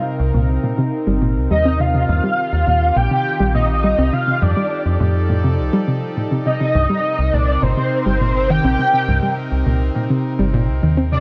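A straight 4/4 pulse at 103 BPM drives this eerie, glitchy IDM excerpt in C dorian, cycling from Cm7 through Eb69 and F13 back to Cm7 under light reverb. A dark, warbling pad with slow attack and vintage 12-bit sampler grit holds sustained chords, while a metallic FM bass enters at 0.2 seconds, sitting forward in the mix with fast, decaying notes. A soft, round pluck adds detuned arpeggios through chorus and tape echo from 0.3 seconds, and a nostalgic lead with vibrato and sub-octave weight carries the melody up front, thickened by ensemble chorus and delay.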